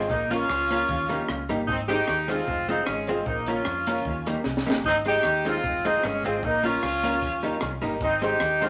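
A cheerful, bouncy ska excerpt in Ab major at 152 BPM with a light swing opens with a punchy horn section carrying the melody up front, while a clean, direct-recorded electric guitar with dub echo, woody upright piano stabs, a round, foam-muted dub bass and a compact cocktail kit with a high-tuned snare all play throughout, cycling through Bbm, Eb, Ab and Fm in a wet studio reverb, with a brief drum fill at 4.5 seconds.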